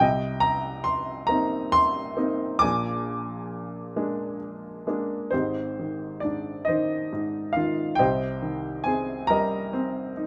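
An intimate, up-front baby grand piano sits in light reverb, its natural tone, short sustain and audible action noise giving the recording a close, unvarnished feel. This short fragment of a longer classical work is a reflective, wistful solo piano piece in a rubato 6/8, ranging from deep bass notes to bright upper-register tones. Its harmony moves through Cm7 and Bb7 before a new passage begins at 5.3 seconds on Abmaj7 and settles on C minor.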